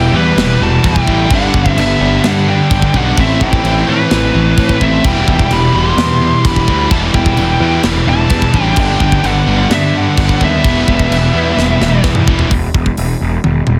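A dense, heavily limited small-room mix carries this epic, dark heavy metal excerpt in E minor at 129 BPM, where a dark, high-gain lead guitar carries the melody over a second distorted lead line, three background riff guitars (one bright and overdriven, one bright and high-gain, one warm and double-tracked) churn through Em, G and Am, a growly fuzz bass sits up front, and a tight acoustic kit with a medium-tuned snare enters at 0.4 s and plays a fill from 11.6 s before the harmony drops out at 12.5 s.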